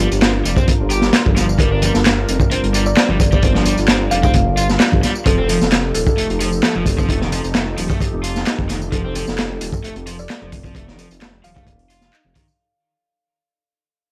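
A crunchy breakbeat kit sits up front, saturated with a rolled-off top, a punchy kick and a medium-tuned snare, driving this gritty, raw 131 BPM breaks excerpt in straight 4/4. It is layered with an overdriven garage kit of metallic hats, handclaps and tambourine, and very quiet, ringing congas entering at 0.6 seconds. A deep, rumbling detuned saw bass with tube saturation anchors the drop beneath an overdriven semi-hollow guitar riff roughened by 12-bit sampler grit and tape echo, while a swirling phased analog pad pumps in the background over Gm7 moving to F9 at 5.3 seconds. A woody, thumbnail-plucked kalimba melody filtered to a telephone sound with tape echo enters at 1.6 seconds and returns at 8.9 seconds, all set in a dry, gritty hardware recording with vinyl crackle that fades out from 5.3 seconds.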